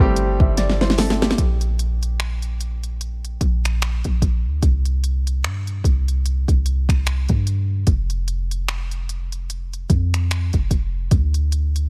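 A natural-toned baby grand piano and a deep, boomy sine 808 bass open this moody, longing contemporary R&B excerpt at a swung 74 BPM, joined at 0.2 seconds by an up-front electronic kit of finger snaps, smooth hi-hat, soft kick and fat snare that plays a fill from 0.6 seconds, before the piano drops out at 4.6 seconds and leaves the bass and drums to carry on in a dry, close-sounding mix.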